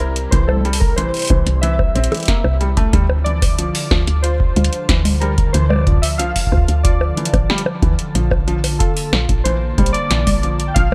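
IDM with a playful, intricate mood, moving over C, Dm and Bbmaj7 chords in a straight 4/4 feel, taken from a longer piece. Warbly lo-fi synth keys carry the melody with chorus, delay and 12-bit sampler grit, while a felt-muted upright piano plays intimate arpeggios through dub echo, its action noise audible, and a glassy FM pad holds ethereal chords in the background with ensemble chorus, built-in reverb and sidechain pumping. A woody, round FM bass sits prominently alongside an electro analog drum machine with punchy snare, metallic hats, bongos and congas, joined at 0.3 seconds by a deep electronic kick, all in a dry sound.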